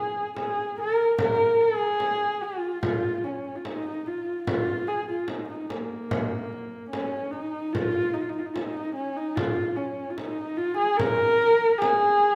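A husky, woody horsehead fiddle carries the melody from the start, its dark bowed tone shaded with light vibrato and gliding portamento as it sits up front in this vast, windswept Mongolian folk piece at a steady 73 BPM. A small, bright frame drum enters at 0.4 seconds and sounds distant beneath it. The recital hall reverb gives the music a spacious setting, and the melody moves into a new section at 7.7 seconds before this cut from a longer piece ends at 12.3 seconds.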